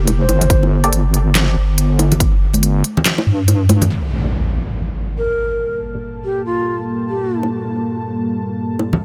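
Set in a swung half-time 4/4 at 141 BPM, this cavernous, meditative stretch of deep dubstep in G minor is cut from a longer piece. A punchy, tape-warm electronic kick sits up front beside a dubstep kit of handclaps, crisp low-passed hi-hats and a deep, filtered snare in a small room, while close, ringing bongos and congas carry dub echo. Beneath them, a dark, detuned wobble bass with chorus anchors the low end, and a breathy, bright ney offers brief echoing phrases. The kick drops out at 3.1 seconds, and an electronic impact at 3.9 seconds opens the second section on a Gmadd9 chord, where a muted, mellow chord stab with phaser and echo flickers and a moody, full-bodied analog pad with chorus arrives under a filter sweep. The mix stays dry, with little reverb.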